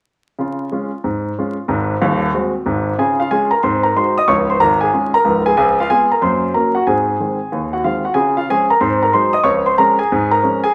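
Swinging and exuberant, this short stride piano excerpt moves at a brisk 185 BPM in 4/4, with a 65% swing on the eighth notes and a home key of D-flat major. A solo grand piano carries the whole piece from 0.4 to 10.7 seconds, its tone clear, polished and up front, ranging from deep bass notes at Db1 up to bright Eb6 at the top. The harmony moves through familiar turns between Db and Ab7, with a lift at 5.6 seconds through Db7 to Gb and Ab before settling back home. An opening passage gives way at 3.0 seconds to a second section that runs to the close. The piano sits in a moderate large-studio reverb, and a layer of vinyl crackle lends the recording a vintage patina.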